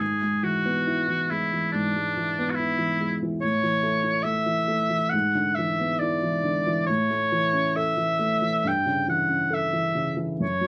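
A clear oboe carries the melody from the first moment, its light vibrato and punchy tone sitting up front yet with a distant, roomy quality, ranging from D4 to G5 in a classical solo style. Beneath it, a dark baby grand piano supplies the accompaniment, mellow and intimate, with audible action noise giving its smooth sound a vintage character. This romantic classical duo moves at 69 BPM in 4/4 with a rubato feel, set in A major and lyrical in mood. The harmony travels from E/G# through A and E7/G# back to A, then turns toward A7/G near 8.7 seconds. Light reverb frames both instruments in this short cut from a longer piece, which lasts about 10.7 seconds.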